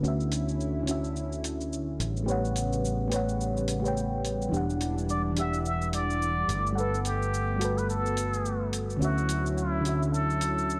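Dark, warm production with a moderate scoring-stage reverb frames this wistful, relaxed sunset chillout excerpt at 107 BPM with a swung 16th feel, where a round, warbling FM electric piano with chorus and delay and a thick, detuned unison pad carry Dmaj9, A13, Em9 and Gmaj9 chords over an up-front fretless electric bass and a gritty, overdriven electronic shaker and hi-hat, and at 5.1 s a plunger-muted trumpet joins them with a wah-wah jazz solo full of vibrato and scooped notes.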